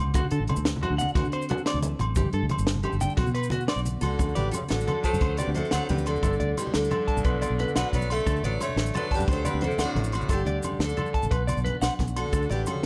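Light reverb lends a modest sense of space to this carefree, danceable highlife guitar band excerpt, set in a straight 12/8 at 118 BPM in D major. A round, dark fingered electric bass sits up front beside a compact cocktail drum kit with a high-tuned snare and punchy kick, while ringing agogo bells chime along and low-tuned congas with a thick-skinned tone and grainy maracas fill the background. A twangy electric guitar at the edge of break-up spins bright arpeggios through a slapback echo, and a very quiet, clean electric guitar adds murky fingered accompaniment underneath. After a drum fill at 3.7 seconds, a picked steel-string acoustic dreadnought enters at 4.0 seconds with a vivid, forward melody, joined at 4.1 seconds by a raspy, gritty tenor saxophone playing a low second line with light vibrato. The harmony cycles through D, D7 and Gsus2, first landing on B5 and later on Bm before returning home to D.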